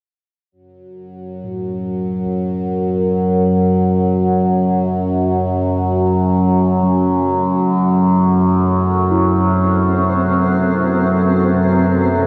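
Cavernous and ominous, this free-time dark ambient drone, cut from a longer piece and tuned to A4 = 438 Hz, opens with an up-front, resonant drone of moving overtones entering at 1.2 seconds, joined at 1.4 seconds by very quiet bronze gamelan-type bossed gongs playing beating, metallic arpeggios, then by a deep, detuned analog pad fading in with sub-octave sustained chords from 4.4 seconds, and finally by a grainy, flickering granular texture in the background from 9.5 seconds, all bathed in a wet cathedral reverb as the harmony moves from F#m7 to Amadd9.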